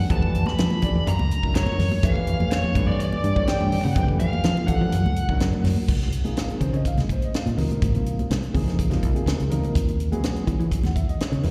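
Electric jazz fusion at 124 BPM in a straight 4/4, bright and slick, captured live through a venue's PA with recital hall reverb, in a clip cut from a longer piece. A distorted, bluesy overdriven lead guitar with slapback and tape echo carries the melody until 5.4 s over a mellow, boxy grand piano, a punchy foam-muted fingered bass up front, a tight funk kit with a high-tuned snare, and thick-skinned congas in the background. The chords move among F69, F#7b13 and Gadd9 before settling into Db major at 5.9 s, with Dbmaj9 shifting to Emaj9 at 9.8 s.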